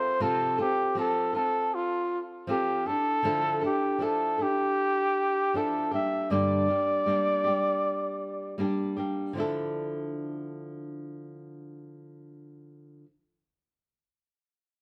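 Acoustic pop in D minor at 79 BPM, this short excerpt from a longer piece has a wistful, reflective mood and a straight 4/4 pulse. A breathy trumpet carries the melody up front, its dark, whispered tone shaped by vibrato, soft attacks and scooped notes, with a smooth top and a touch of delay lending an intimate, pop-style solo voice. Beneath it, a fingerpicked flamenco guitar provides accompaniment, acoustic and up front, with audible finger squeak adding a human, close-up texture. The harmony moves from F/C through Dmadd9 to Gm before returning to Dmadd9 at 9.3 seconds, where a second section begins. The trumpet falls silent at 8.6 seconds, leaving the guitar alone until 13.1 seconds. Light reverb gives the sense of a band playing live together in one room.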